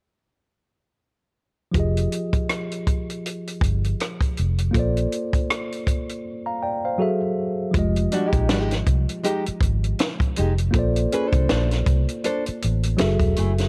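A round, foam-muted electric bass sits up front in this relaxed, sensual neo-soul and R&B passage, its amped tone punchy beneath a groove at 80 BPM in 4/4 with a gentle 16th-note swing. A compact cocktail drum kit plays dry and mid-forward, with a high-tuned snare, a kick with real thump, rim clicks and hi-hat, its top end rolled off. A worn, slightly out-of-tune tine electric piano supplies mellow, clean accompaniment over chords moving through Fm9, Bbmaj9 and Gbm9. After a brief silent gap at 6.2 seconds, a full-bodied nylon-string guitar enters at 8.1 seconds as a second line, fingerpicked with a deep classical character and audible finger squeak. Small room ambience and a dark, warm production give this cut from a longer piece an intimate, close feel.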